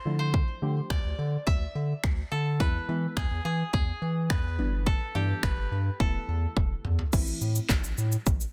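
A bright, woody koto opens this short dance-pop passage, its dry fingerpicked melody trailed by delay and carrying a bittersweet yet confident mood in a straight four-four pulse. Almost at once a deep, mellow chord stab joins beneath it, soft and full-bodied with a detuned, chorused character and a filter sweep, pumping with sidechain compression while moving through Dmadd9, E, G6 and Esus4. A round analog bass sits up front in the low register, dark and sustained with a fast attack, and it also breathes with sidechain pumping. The layered electronic pop kit enters at 0.3 seconds with a punchy kick, a fat, overdriven snare, handclaps, finger snaps, shaker and crash, sounding as if re-recorded in a small room. A drum fill at 6.6 seconds leads into a new section at 7.1 seconds that settles on A minor. The mix is dense and heavily limited, with little reverb, keeping the drums and bass close and forceful.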